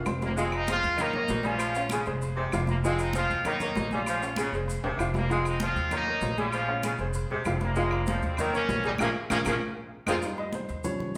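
This driving, danceable salsa excerpt in F minor opens with a short drum fill before the full band settles into a straight 4/4 at 195 BPM. A warm, woody upright piano with short sustain carries the accompaniment alongside a dark, thumpy pizzicato upright bass on gut strings that sits up front. In the background, high-tuned congas struck with hard hands, ringing metal-shell timbales with agogo bells and dry woody claves fill out the percussion, joined by grainy, mellow maracas. A punchy, vintage trumpet section with vibrato leads the melody, joined by a bright saxophone section playing a lower second line, while the harmony cycles through Fm7, Eb7 and Bbm7. Further drum fills arrive around 4.8 seconds and 9.0 seconds, the second joined by a band accent before the music moves to Abmaj7 at 10.2 seconds. The whole group sounds like it is playing live in one large studio room, bathed in a wet reverb.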